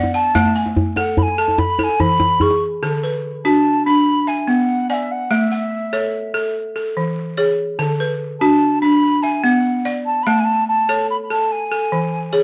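Set in a straight-feeling 12/8 at 97 BPM (counted in dotted quarters), this joyful, flowing fragment of West African traditional string and xylophone music sits in D lydian and cycles through A, E, D and Bm. A woody, buzzing balafon struck with hard rubber mallets plays arpeggios from D3 to G#5 across the whole piece, while a breathy, mellow wooden flute carries the melody between E5 and C#6 with vibrato, tongued notes and a slapback echo. A close, soft-handed djembe adds percussion only until 2.7 seconds, and the dry, close sound evokes a 1970s studio.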